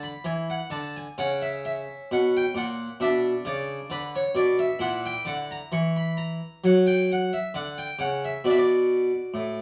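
A close-miked harpsichord sits up front in a studio, its dry, plucked tone touched by a moderate reverb of 0.6 s that gives the room a faint sense of space. This is a classical, baroque-style suite movement for solo harpsichord, solemn and grave in mood, moving at a slow 66 BPM in 4/4 with a free, rubato feel. The Italian-style instrument, strung with two sets of strings, has a full body across a range from A2 to C#6, and it is tuned to A4 = 439 Hz. The harmony dwells in B minor, turning through A#dim and F#7/A# before settling back on Bm at 8.5 seconds. Lasting 9.6 seconds, this short passage is cut from a longer piece and leaves the movement's weighty character hanging in the air.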